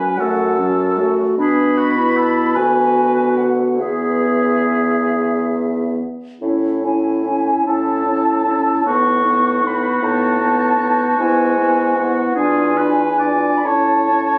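Tender and warm, this slow romantic classical movement for wind quintet unfolds in a rubato 6/8, with a pure, vibrato-tinged flute carrying the melody over a distant oboe second line, a soft-attacked clarinet and a smooth-topped French horn in accompaniment, and a bassoon bass with light vibrato, the whole ensemble heard through moderate recital-hall reverb as if captured on a phone in the room, in a short cut from a longer piece.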